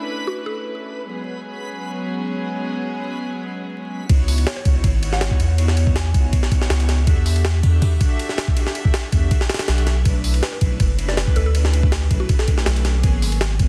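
Drum and bass with a jungle edge at 161 BPM in C# minor, this atmospheric, raw excerpt opens on dark, bowed studio strings with vintage 12-bit sampler grit and a brief reversed, dreamy swelling texture with built-in reverb, while a woody, mallet-like FM pluck drifts in the background through chorus, phaser and dub echo, until the drop at 4.1 s brings in a round, deep dub sub bass and an up-front, pitched-up jungle sampler kit with a thumpy kick, high-tuned snare, hi-hat and ride, all under a dense, heavily limited master with vinyl crackle.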